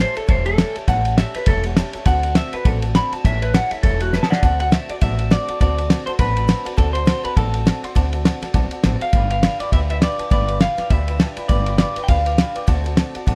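A swung 203 BPM rockabilly groove in 4/4 drives this rowdy, rollicking cut from a longer piece in D mixolydian, with a thuddy, cloth-damped drum kit of fat snare, tight kick and dark ride cymbal entering at 0.2 seconds and sitting up front beside a thumpy, gut-strung upright bass played pizzicato. A twangy, slightly broken-up electric guitar through a small old amp carries the melody with analog delay, taking a clean solo until a drum fill at 4.1 seconds leads into the next section, where the chords move from D7 to G7 at 9.1 seconds. In the background, a boxy acoustic archtop guitar with old strings and a mellow, dark upright piano fill out a dry, close-sounding room.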